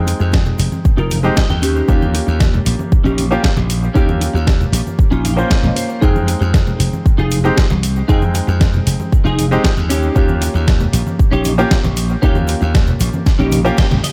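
Nu-disco at 116 BPM with a sleek, cosmic mood, this excerpt pairs a punchy, up-front electronic kick and a gritty sampler-style kit with a fat snare, a bright slap bass that pumps against the kick, twangy clean electric guitar riffing through chorus, filter and tape echo with fills at 1.1 and 5.0 seconds, a clear grand piano comping over Fm7 and Eb7, and soft-handed congas and cabasa in the background of a dry, echo-heavy mix that closes on a drum fill and band accent at 13.8 seconds.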